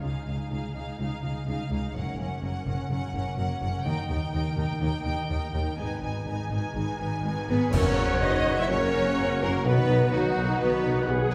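A straight 4/4 pulse at 125 BPM drives this heroic, adventurous film-score cue, cut from a longer piece and set in Db mixolydian before shifting to F# major at 7.7 s. Lush bowed violins carry a smooth, vibrato-rich melody over a focused second violin line and expressive viola accompaniment with portamento, while a ringing concert harp plays arpeggios in the background and clear cellos and bright double basses hold the bass beneath. Dark cymbals, a cymbal swell and a concert bass drum, close and dry, add weight from 3.9 s to 8.7 s. At 7.5 s an airy, hollow flute section and a distant clarinet enter with second lines, and at 7.7 s the full band hits an accent as the music moves into F# major: mellow French horns and clear trombones hold sustained chords, a vintage-toned trumpet punches stabs on a high F#, a mellow tuba reinforces the bass, and round, soft-mallet timpani sound briefly. The whole ensemble sits in a wet scoring-stage reverb, heard from further back in the room, giving it a grand, spacious sweep.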